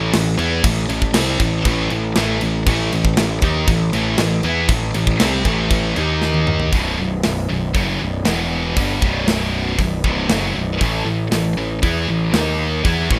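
An up-front, growly fuzz bass drives this relentless, dark heavy metal excerpt at 118 BPM, joined by two bright, high-gain distorted guitars playing riffs, one sitting in the background, over a tight, acoustic drum kit with bright cymbals and a tight kick, all in a rough home demo mix with small room ambience, moving through power chords such as A5, D#5, B5 and E5, with a drum fill at 6.2 seconds leading into a new section at 6.7 seconds.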